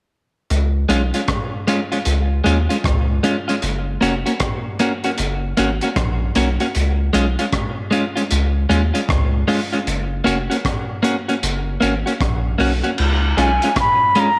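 Warm and uplifting, this roots reggae excerpt moves at a relaxed 77 BPM in Db mixolydian with a swung sixteenth feel, as a round, deep dub sub bass and a crunchy, gritty breakbeat kit with a punchy kick, dark cymbals, hi-hat and rim clicks settle in at 0.5 seconds beneath a clean, scooped electric guitar bathed in spring reverb and tape echo, all shifting between Db and Gb chords in an echoing chamber until a reedy, airy silver flute with its own tape echo takes the melody at 13.4 seconds, shortly after the piece turns to a new section.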